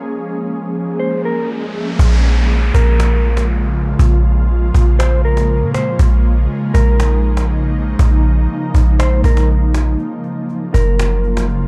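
An atmospheric cloud-rap hip hop excerpt in a hazy, spacious half-time feel, where an ethereal, detuned pad with chorus and reverb holds Bbm7 chords, an electronic riser enters at 0.9 seconds, a clean, fingered electric guitar carries a mellow melody through vibrato, low-pass filtering and digital delay, and from 2.0 seconds a deep, boomy 808-style bass sits up front beside a snappy acoustic cajon before a brief break at 10.0 seconds shifts to Gbmaj7.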